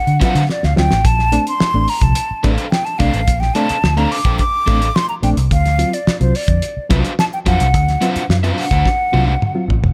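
A breathy, hollow flute with tape echo opens this cool, hypnotic funk excerpt, joined at once by a round, foam-muted fingered bass, a cloth-damped drum kit with a fat snare and tight kick that plays fills at 0.5 and 8.9 seconds, a crunchy overdriven guitar and reedy electric piano stabs pulsing with fast tremolo, all moving between D7#9 and Bbmaj9 in a dry, up-front sound.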